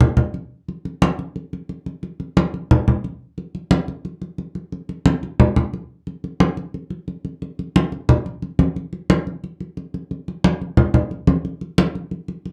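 Congas open the recording and carry it alone from the start to the end at 12.5 seconds, a short cut from a longer Latin piece with a sunny, joyful mood. The tempo is a brisk 178 BPM in 4/4 with a straight feel. The drums sound low-tuned and thick-skinned, struck with soft hands, their tone damped and warm, and they sit up front in the mix. A wet small-room ambience with a short decay surrounds them, while the overall production leans dark and carries tape saturation. The passage moves into a new section at 8.8 seconds and continues on the same acoustic hand drums until it is cut off.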